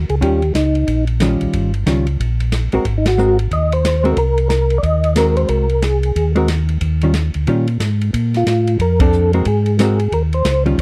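A soft, flute-like tonewheel organ carries the melody up front in this greasy, soulful soul jazz organ trio excerpt, its percussive second-harmonic attack colored by chorus vibrato and a slow rotary speaker. It drops out partway through and returns at 8.4 seconds. Beneath it, a second tonewheel organ holds down the bass line with a round, mellow tone, audible key click and its own slow rotary swirl. A clean, compressed hollow-body electric guitar, played fingered with a dusky edge, supplies chords moving through Eb9, Ab9 and Bbadd9. An open acoustic jazz kit swings the eighth notes with dark cymbals, a medium-tuned snare and a boomy kick, sitting a little behind the other parts. The band hits shared accents at 3.0 and 9.0 seconds, all captured in a dry, close 1970s-style studio sound with a small room's reverb.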